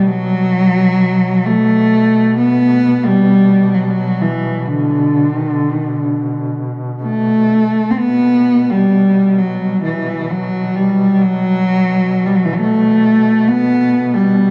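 Caucasian folk lament in B minor, moving at a rubato 65 BPM in 3/4, with a longing, solemn mood. A single bowed cello carries the melody up front, its dark, woody tone colored by vibrato and a tape echo, sitting between D3 and C4 yet sounding somewhat distant. Beneath it, a duduk holds a low drone on B2, played in folk style with vibrato, scooped notes and a smooth top, mixed well below the cello. Both parts sound throughout the 14.5 seconds, which are cut from a longer piece. A wet church reverb with a long 3.7-second tail surrounds the performance, and the production leans dark and warm.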